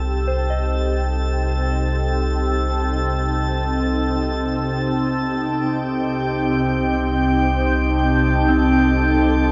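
Ambient piece in free time, spacious and reflective, built on a single minor chord and soaked in a lush hall reverb. A glassy, ethereal FM pad sits up front with ensemble chorus, while a soft, warbling vintage synth bell plays arpeggios in the background through chorus and tape echo, and a drifting, bright glass-harmonics texture moves through the upper register. Beneath them a deep, ominous rumbling drone holds the bass, and the pad, bell and texture all fade in across the 9.5 seconds of this fragment of a longer piece.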